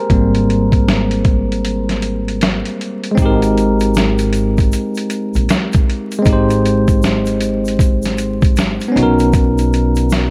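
Wrapped in vinyl crackle and light small-room reverb, this cosy, nostalgic lo-fi hip hop excerpt in Ab major moves at a swung 78 BPM, with a bell-like tine electric piano tinged by cassette tape sitting up front over a woody pizzicato upright bass and a gritty, compressed sampler-style soul drum kit with a thumpy kick, while a grainy tube shaker joins in the background at 3.2 seconds and the harmony shifts from Abmaj9 to Bmaj9 at 9.0 seconds.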